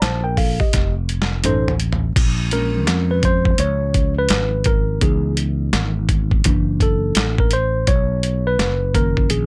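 Swung sixteenths at 84 BPM in 4/4 carry this mellow, cool jazz-hop excerpt in Bb phrygian: a gritty, overdriven boom bap sampler-style drum kit with a thumpy kick plays a fill from 0.7 to 2.2 seconds, a round, punchy fretless electric bass holds the low end, and a worn, slightly out-of-tune tine electric piano takes a solo from 2.2 seconds over chords moving from Bbm7 through Dbm7 and Gb7alt to Bmaj7, all three parts dry and up front.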